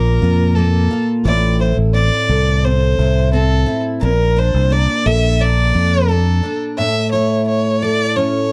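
Reflective and wistful, this short acoustic pop excerpt at 87 BPM in straight 4/4 sets a smooth, close bowed violin melody with vibrato over a double-tracked, woody steel-string acoustic guitar picking on old strings, while a punchy, up-front fingered electric bass anchors the low end until 6.4 seconds, all wrapped in light reverb and a dark production as the chords move from Bb5 through Amadd11 and Bbmaj7 to A.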